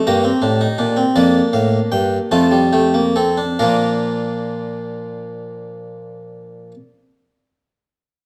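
An airy, bright French-style harpsichord on a single set of strings sits up front in this stately yet lively baroque-style four-part fugue in Bb major, a fragment cut from a longer piece in a straight 6/8 at about 45-57 dotted-quarter beats per minute, easing back over the first 3.6 seconds as the harmony moves from Eb/G through Bb/F and F to arrive on Bb, with the harpsichord sounding until 6.7 seconds inside a moderate stone-room reverb and a dark production.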